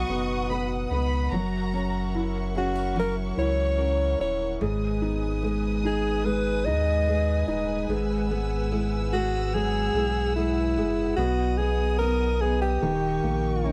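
Pop ballad in G# minor at 73 BPM with an emotional, longing mood, where an up-front, close-miked alto saxophone sings the jazz-style melody with vibrato over a soft, intimate felt-muted upright piano with audible action noise, fingerpicked steel-string acoustic guitar arpeggios with finger squeak in the background, a round sine sub bass, and lush bowed string chords, while a violin section adds a brief second line until 2.4 s, all captured in a dry, close 1970s-style studio sound.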